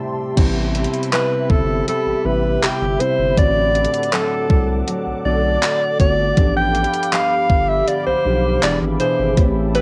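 Moody and late-night, this contemporary R&B excerpt moves at 80 BPM in a straight 4/4, with the soft haze of a home cassette recording in a light reverb. A worn, slightly out-of-tune tine electric piano opens with a brief fill over the guitar and pad before the drums and bass arrive at 0.4 seconds. There, a gated 80s digital drum machine sits up front with a thumpy kick, hi-hat, handclaps and crash cymbal, alongside a deep, saturated sine sub bass with a fast attack. A breathy alto saxophone takes the solo melody from 1.1 seconds, present and jazz-styled with vibrato, carried by plate reverb. Beneath it, a fingerpicked steel-string dreadnought guitar plays full-bodied arpeggios in the background with tape echo, while a glassy, ethereal FM pad holds dark sustained chords through ensemble chorus, plate reverb and sidechain pumping. The harmony moves from Cmaj7 to D7/A, G7/A and finally E7.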